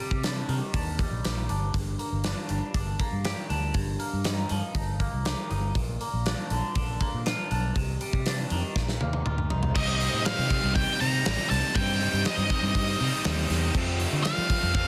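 Brooding and dark, this quiet-loud alternative rock excerpt opens with a clean, twangy electric guitar picking phaser-tinged arpeggios over a round fingered bass and a big, up-front acoustic drum kit with a punchy, softly clipped kick and a medium-tuned snare. A drum fill at 8.8 seconds leads into the heavier section. A bright overdriven guitar enters at 9.7 seconds, and from 9.8 seconds a cranked stack guitar joins it on a riff in the background while an octave-fuzz lead guitar carries a high melody through distortion and digital delay.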